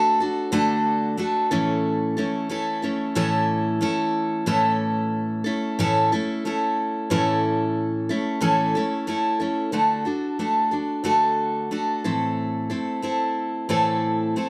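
A straight, easy-going pop feel carries this carefree solo passage for picked steel-string acoustic guitar, full-bodied and up front, drifting from D to A and later back to D before settling on A minor at 12.1 seconds, caught by close, detailed microphones with a light touch of reverb.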